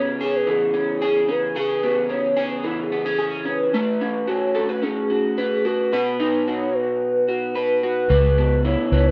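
A hollow, woody synth lead carries the melody in this dreamy, nostalgic bedroom-pop fragment, its soft attack and sustained, mellow tone colored by vibrato and an analog chorus as it moves between G#4 and C#5. Underneath, an electric guitar through a small old amp plays accompaniment from the start, sounding dark, slightly broken-up and lo-fi, with its own analog chorus and a warbly pitch drift that adds a hazy, wobbly character. At a straight 110 BPM in 4/4, the harmony moves through C#m7, A69 and B before returning to C#m7. At 8.1 seconds a vintage muted electric bass arrives on a round, punchy C#2, sitting up front and clearly louder than the other parts. The dry, rough home-demo mix gives the piece an intimate, unpolished feel, and it is cut from a longer piece, ending at 9.1 seconds.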